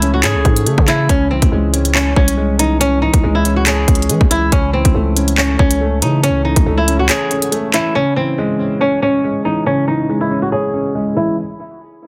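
An up-front, fingerpicked flamenco guitar melody with tape echo and a low-pass filter leads this ominous, tense drill excerpt at 140 BPM in half-time, in C# harmonic minor, over a dark, boxy concert grand piano whose audible action noise and deep bass sit behind a low-pass filter. A growling, buzzy 808-style bass and an electronic drill kit of hard-clipped kick, crisp hi-hats and handclaps, re-recorded in a large room, drive the groove until the bass stops at 7.1 seconds and the drums at 7.8 seconds. From 8.0 seconds a filter sweep carries guitar and piano alone through the close of this dense, heavily limited, dry-sounding mix.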